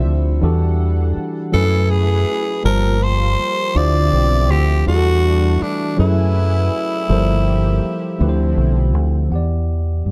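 Yearning and sultry, this slow R&B fragment in 6/8 moves at 54 BPM over a looping cycle of minor eleventh chords, with a dark, round fingered electric bass up front and a worn, slightly out-of-tune tine electric piano played clean through a combo amp. A shimmering, detuned pulse-width pad with chorus hangs mellow in the background, sustaining chords until 9.3 seconds. From 1.5 to 8.5 seconds a breathy, raspy tenor saxophone takes the jazz-style solo up front, growling through scooped notes with a soft attack, all in a dry, close sound.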